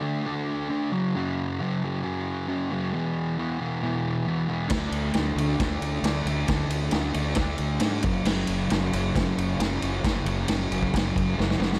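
A double-tracked, dark fuzz guitar riff opens this menacing, swaggering garage rock excerpt in F# minor at 135 BPM, moving through D5, F#5 and E5 chords alone until an overdriven fingered electric bass and a punchy, rolled-off vintage drum kit with a medium-tuned snare join at 4.7 seconds, all inside light reverb and studio ambience, before a drum fill at 11.4 seconds carries it to the end of the excerpt.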